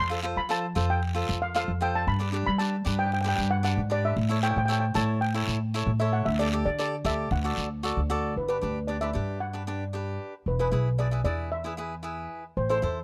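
A straight 4/4 calypso groove at 114 BPM in G major sets a bouncy, festive mood, with an up-front, woody pizzicato upright bass on steel strings thumping beneath a bright, crisp picked cavaquinho from the start. A mellow double seconds steel pan played with soft rubber sticks carries the melody with a shimmering, vintage, band-limited tone, while a raspy, close guiro scrapes along from 0.5 until 8.0 seconds. The dry, close 1970s-style studio sound with small room ambience frames this section cut from a longer piece, which shifts at 8.4 seconds to a Gmaj7 and then E passage.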